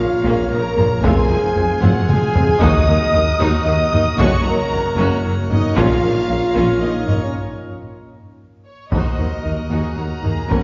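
Mellow French horns hold sustained chords in this heroic, epic orchestral film cue in three, joined by a brilliant full-voiced pipe organ and hard-stick taiko drums that enter at 0.8 seconds and add fills along the way. Lush, vibrato-laden violins carry the melody and a focused second line in the background, over smooth, even violas, while an intense cello section, a distant double bass section and a soft-attack tuba sit very quietly underneath as the bass. The excerpt moves through a break before a new section arrives at 8.9 seconds, all set in a wet concert hall heard from further back in the room.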